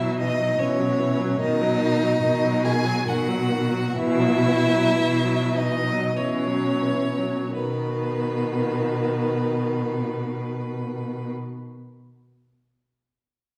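This is a classical slow romantic movement for string quartet in B major and 3/4, tender and serene, cut from a longer piece. The tempo is rubato, moving between 41 and 76 BPM, and it slows down from 0.2 s until a new section arrives at 7.6 s. All four players sound together from 0.0 to 11.3 s. A clear, focused violin carries the melody between B4 and G#5 and sits distant in the room, while a second violin supplies a warm, expressive line with vibrato, portamento and a soft attack, set close. A rich-toned viola fills the accompaniment between D#3 and F#3, and an up-front cello holds a B2 bass with a soft attack and expressive portamento, all bowed over harmony that alternates between B and F#5/B. The wet recital-hall reverb, with a 1.4 s decay, places the listener further back in the hall and lends the quartet a soft, airy glow.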